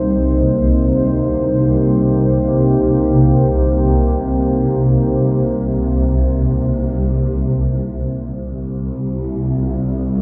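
In free time, this dark ambient drone drifts with a cavernous, desolate mood, tuned slightly flat at A4 = 439 Hz and cut from a longer piece. Up front, a deep, moody pad holds sustained chords with slow attacks and long releases, its detuned sawtooth and sine layers thickened by a sub octave and softened by chorus and reverb. Also up front, a swarming drone sits low in pitch, tense and warbling with a granular, vintage character, evolving through a phaser and its own reverb. A bronze singing bowl, struck with a suede striker, adds a barely audible metallic ring with slow beating until 7.2 seconds. The harmony rests on a rootless Abmaj9 over C before settling onto C minor at 7.2 seconds, and the whole mix is drenched in a wet echo-chamber reverb that lingers in the dark space.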